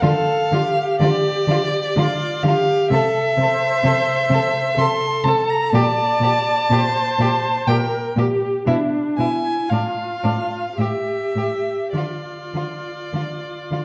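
A bowed violin carries the melody up front, its warm, smooth tone singing high above the ensemble with an even vibrato in this solemn, elegiac slow movement for string quartet. Close beside it, the cello holds the bass with a dark, expressive voice, gliding between notes with portamento. A second violin and a viola fill the middle with rich, vibrato-laden lines, the second violin sounding distant and the viola staying focused. The music moves in a rubato 3/4 at roughly 50-65 BPM in D minor, tuned to A4 = 444 Hz, passing from Dm through Am/C, Gm/Bb and E7/B before settling back on Dm at 11.9 seconds. A reverberant recital hall lends the four players a dusky glow across this 13.8-second fragment of a longer piece.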